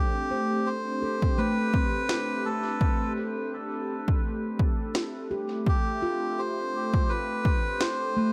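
Hazy and spacious, this short ambient dub piece, cut from a longer work, moves at a relaxed, lightly swung pace in 4/4. A reedy, breathy melodica carries the melody up front from the first moment, its nasal tone trailing dub echoes, while a smooth, detuned sawtooth pad holds sustained chords underneath with a soft attack, long release and a shimmer of chorus. At 0.3 seconds a ringing handpan joins with meditative arpeggios played with the fingertips, its steel tone also set in dub echo. A punchy, overdriven electronic kick drum enters at 1.2 seconds as the loudest part, soon followed by a woody electronic snare whose hits are thrown into echo. The harmony rests on Am7 before shifting to Dm7 near the end, all within light reverb and a gentle studio ambience.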